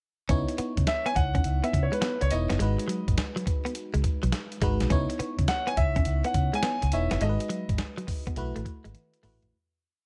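Bouncy and slick, this short new jack swing R&B piece in C# minor rides a hard-swung 104 BPM groove from a gritty, tape-warm sampler-style drum kit with a thumpy kick, a round, punchy muted fingered bass line with ghost notes, glassy, bell-like FM electric piano push chords with chorus, and a twangy, muted single-note clean guitar riff with lush chorus, while a concert grand piano enters at 0.9 seconds with open, motif-based call phrases, all in a dry, close mix that fades out from 7.2 seconds as a drum fill arrives at 8.9 seconds.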